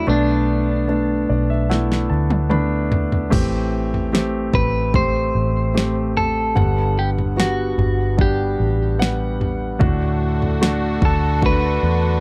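A dry, close recording in a 1970s studio manner frames this heartbroken, emotional pop ballad fragment at 74 BPM in 4/4, moving through Bm7, Am7 and Gmaj7 to D. A clean, picked, compressed electric guitar carries the melody up front over an intimate grand piano with audible action noise, deep bass and long sustain, while a dark, round, foam-muted fingered bass sits punchy beneath. An electronic, layered drum kit with a deep kick and fat snare enters with a fill at 1.7 s, joining a piano fill under way since 0.9 s, and at 9.8 s a quiet string section adds sustained chords with a reedy gut-string tone and light vibrato.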